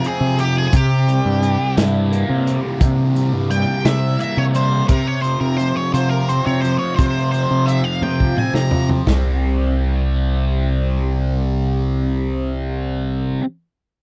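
A dry, close 1970s-style studio sound frames this dark, mysterious psychedelic rock cut in 6/8, where a barely audible, lush bowed string section glints for a moment at the very start. A warm octave-fuzz lead guitar solos through wah, distortion and slapback echo over a bright, double-tracked fuzz guitar riff coated in phaser, a round, growling overdriven bass, and a saturated, gritty breakbeat kit with a tight kick and a rolled-off top. The kit's fill runs from 8.0 to 9.1 seconds, after which the solo and drums drop away, leaving the fuzz riff and bass to carry the close.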